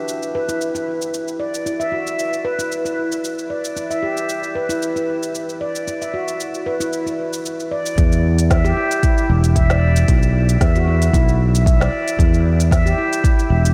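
A ringing stainless-steel handpan carries this hypnotic organic downtempo piece, playing mellow arpeggios through tape echo, up front in the mix. It moves at 114 BPM in 4/4 with a light swing on the sixteenths, in E minor, over a simple progression of E minor and a rootless Dadd9. From 0.1 s, a quiet, organic electronic drum kit adds smooth hi-hats, shaker and a woody snare. At 8.0 s the groove deepens as a growly, punchy fretless electric bass arrives, pumping against the sidechain, alongside a deep, overdriven electronic kick. A huge ambient reverb with a long 7.1-second tail soaks the mix in a dreamy haze, and the recording is cut from a longer piece.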